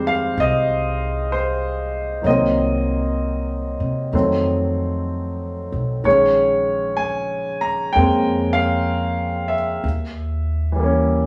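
Swinging gently at 64 BPM in 4/4, this late-night, intimate jazz ballad fragment pairs an up-front baby grand piano, clear with audible action noise and long sustain, with a woody pizzicato upright bass across 11.3 seconds of chords moving from Fm9 through Cm7b5, F7b9 and Bbm11 to Eb7b9, all set in a wet studio room where the two play live together.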